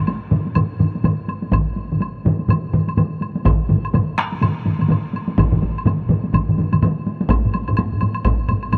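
Solo taiko struck with hard sticks in a small room and a close, dry, woody woodblock open this driving, powerful excerpt of Japanese traditional taiko ensemble music at 125 BPM in 4/4 with a swung sixteenth feel, joined at 0.3 s by two heavy-stick taiko ensembles, one forward in a live room and the other vintage and band-limited until it stops at 7.0 s, while a second solo taiko enters up front at 1.5 s, the drums resounding in a huge ambient reverb.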